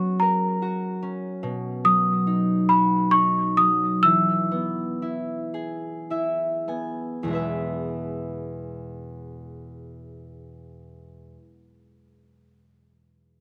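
Lightly reverberant and dry, as if played outdoors, this gentle, tender children's lullaby in 6/8 and E major (tuned to A4 = 439 Hz) drifts at 31-49 BPM in dotted quarters and gradually slows, with an up-front, worn celesta carrying the high, sweet, bell-like melody through slapback echo, its medium felt hammers sounding delicate and slightly out of tune until 6.0 seconds, while a bright, ringing, fingerpicked concert harp accompanies across F#, B and E, adds a fill from 5.5 seconds, and carries on alone to the cut at 11.5 seconds.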